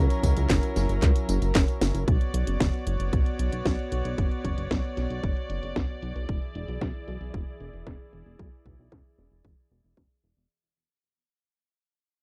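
This excerpt of nostalgic, melodramatic Italo disco opens with a very quiet, clear electric grand piano melody that sounds only for the first 1.5 seconds, over a bowed chamber string section holding sustained chords with light vibrato and a reedy, gut-string tone. A chorused synth bass sits up front with a glossy, retro pulse-wave and sawtooth character, its filter pluck and ring modulation giving a mellow but defined low end. At a straight 114 BPM in 4/4, a house kit of cracking snare, handclaps, hi-hat and tambourine sets the drums going, joined a moment later by a punchy, tape-warm electronic kick, all re-recorded in a small room. A drum fill arrives at 1.8 seconds, and from 2.1 seconds the harmony moves from F#7 to Bmadd9 and later E7 while filter sweeps shape the drums and strings through a long fade-out. The sound is dry and close in a 1970s studio manner, with little reverb.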